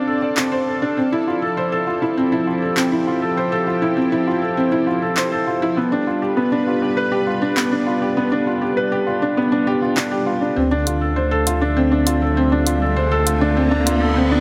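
A straight, steady deep house beat of handclaps and hi-hat, electronic and layered, sits up front from 0.4 seconds, giving this cinematic, hypnotic piano and strings electronica excerpt its pulse. Over it, a soft felt-muted upright piano plays an intimate, mellow riff close to the listener, trailed by digital delay, while a thick, airy unison pad of detuned sawtooth and square waves holds sustained chords with chorus and a bright noise layer. The harmony moves from Dm7 to Fmaj7 and then to G7 before returning to Dm7. At 10.6 seconds a build-up begins and a deep, round sine sub bass enters up front on a sustained D2, joined at 11.6 seconds by an electronic riser in the background. A moderate hall reverb lends the whole mix a lush, spacious glow.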